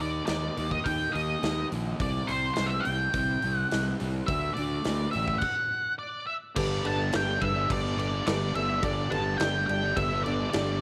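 Driving and swaggering, this classic rock excerpt at 105 BPM in G major is led by an up-front, dark octave-fuzz lead guitar carrying the melody, over a growly, punchy fuzz bass and a double-tracked, crunchy rhythm guitar riffing in the background. A big, natural acoustic drum kit with bright cymbals and a tight kick comes in at 0.3 seconds, and the band hits a stop at 5.4 seconds. At 6.6 seconds a mellow, woody, slightly detuned upright piano with audible action noise joins on a Gadd9 chord, the whole sound touched by light small-room reverb.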